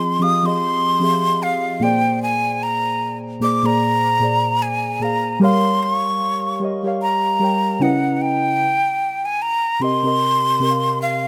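A breathy jazz flute with vibrato and a soft attack carries a longing, sensual melody up front in this slow 75 BPM R&B fragment, swung lightly over muted, felt-like synth keys whose dark, full-bodied chords with a touch of chorus move from Fm7 through Bb7 and Gm7b5 to Dbm7 and Cm7, all set in a small room with light reverb.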